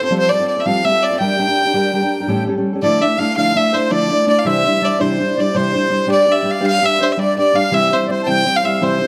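Close, detailed microphones catch a moderate recital-hall reverb with a 1.5-second decay, giving this short excerpt from a longer Celtic slip jig a present yet roomy sound. The tune moves at 110 BPM in 9/8 with a straight feel in D dorian, and its mood is dark, lively and spirited. Up front, a single bowed fiddle carries the melody with a gut-string tone and a reedy edge. The accordion plays a sweet, full second line in the background; it is close-miked and dry, with a light tremolo tuning. A fingerpicked steel-string acoustic guitar, also up front, supplies a dark accompaniment with audible finger squeak and an auditorium character. The harmony passes through Fadd9, Gm and A7 before the second section begins at 2.8 seconds on Dmadd9 and continues through Cadd9 and G to C by 7.7 seconds.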